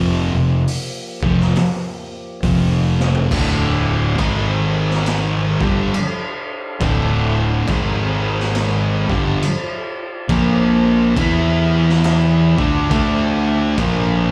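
A slow 4/4 pulse at 69 BPM with swung eighths drags this sludgy, brooding stoner and doom metal excerpt forward from a longer piece. Two thick fuzz guitars sit in the background from the first second, picking the riff: one warm, the other darker and trailed by a slapback echo. Beneath them a fingered electric bass played through overdrive and tube saturation growls with a bright, fuzzy edge. A raw garage drum kit enters at 0.7 seconds with a boomy kick, medium-tuned snare, hi-hat, crash and toms, sounding gritty and saturated in a small room with a rolled-off top, and a drum fill at 2.9 seconds leads into a second passage. At 3.3 seconds a brighter, double-tracked overdriven guitar joins the riff, while the fat, clean tonewheel organ, present from the start, holds very quiet chords through a slow rotary speaker over a harmony that shifts between D minor and power chords on G#, B flat and E. 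Captured live through a club PA, the sound carries only a touch of room reverb.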